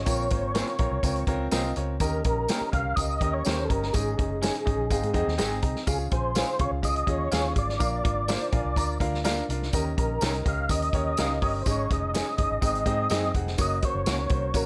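A straight, danceable 4/4 groove drives this uptempo 1960s-style soul passage, cut from a longer piece, with a vintage drum kit of punchy kick, medium-tuned snare and hi-hat sitting up front in a small, natural-sounding room. A foam-muted fingered electric bass, dark and round, anchors the low end, while a close, jingly tambourine sits quietly low in the mix. The melody comes from a mellow tonewheel organ, clean and rounded, colored by chorus vibrato and a slow rotary speaker. A clear grand piano supplies intimate accompaniment with audible action noise and a touch of plate reverb, stepping out with fills at 4.4 and 8.3 seconds. Behind it all, a twangy, slightly broken-up electric guitar through a small old amp adds bright picked stabs in the background, as the harmony moves through Db, Eb7 and Absus4 before shifting to Gb at 13.6 seconds.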